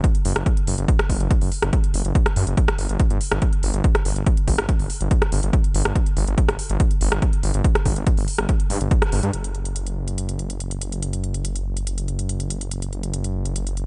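Driving peak-time techno at 142 BPM in a straight 4/4, dark and industrial in mood, tuned to A4 = 444 Hz and cut from a longer piece. A punchy, layered electronic kick sits up front until a full-band accent at 9.0 seconds, with a techno kit of smooth hi-hats and rim clicks running throughout, both in a small room reverb. From 0.3 seconds, a thick, menacing detuned saw bass, beating and saturated with a fast attack and sustained notes between F#1 and G2, pumps against the sidechain up front in a dry mix whose top end stays dull.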